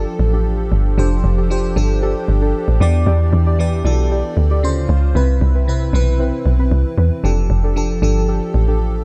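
Set in a digital ambience, this late-night, soulful amapiano passage at 115 BPM puts a deep, round log drum bass up front beneath a lush, dreamy FM electric piano with chorus and phaser, a smooth, slow-attack analog pad with chorus, and soft, warbling chord stabs with chorus and delay sitting dark in the background, moving through F69, Em7, C#maj7 and Cmaj7 before returning to F69 at 7.2 seconds.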